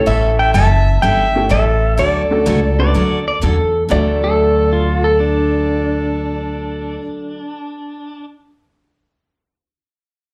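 Country swing in a cheerful, swinging mood, heard as a short slice of a live club set coming through the venue's PA with a modest room reverb around it. A clean, dark-toned lap steel guitar carries the slide melody in its upper register, while a bowed fiddle, distant and woody with a light vibrato, shadows it as a second line. Underneath, a detuned, jangly honky-tonk upright piano sits in the background and a bright, full-bodied dreadnought acoustic guitar is picked with audible finger squeak, both bathed in plate reverb and slapback echo like the lead parts. A thumpy pizzicato upright bass stays up front, anchoring the harmony as it moves from A7 to Dmaj7 and settles on D. At 2.8 s a twangy pedal steel played with fingerpicks joins up front as a further second line, adding volume swells and ringing on until 8.2 s after the others have finished.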